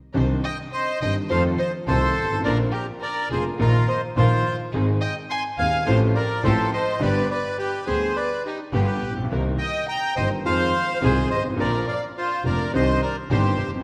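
Tango in C minor at a rubato 105 BPM, passionate and sultry, where a reedy, boxy bandoneon carries the melody up front over a bowed, earthy double bass, a grand piano accompaniment with deep bass and a vintage tone, and an expressive violin second line with vibrato and portamento, while a distant, very quiet chamber string section of gut-string tone adds stabs, all set in a wet scoring-stage reverb in this cut from a longer piece.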